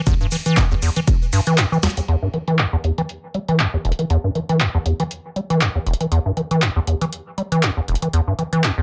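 Acid house with a raw, hypnotic pull at 119 BPM in E minor, swung on the sixteenths, with a squelchy, resonant square-wave acid bass riff, saturated and tape-worn with dub echo, up front beside an overdriven booming analog drum machine of crisp snare, metallic hats, ride and handclaps, while a punchy electronic kick sounds only until 1.2 s and a grainy tube shaker sits in the background until 2.1 s, when a filter sweep takes hold of the bass after a drum fill and full-band accent at 1.8 s, all in a small, moderate room.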